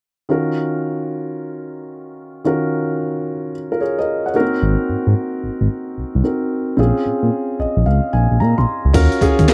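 Swung sixteenths at 111 BPM in 4/4 give this short cut from a longer new jack swing R&B piece a bouncy, slick feel in Eb dorian. A dark, mellow baby grand piano opens alone with intimate chords, its action noise audible and its long sustain ringing through Ebm7, Ab7 and Bbm7. At 4.6 seconds a smooth sawtooth-and-square synth bass arrives, sustained and gliding between notes with portamento, sitting up front beneath the keys. The piano plays a fill from 7.3 seconds. At 8.9 seconds a gritty, compressed breakbeat kit joins with a thumpy kick, a medium-tuned snare, handclaps, hi-hat and crash, carrying a tape-like grain. The close, dry 1970s-style studio sound keeps all three parts near and present.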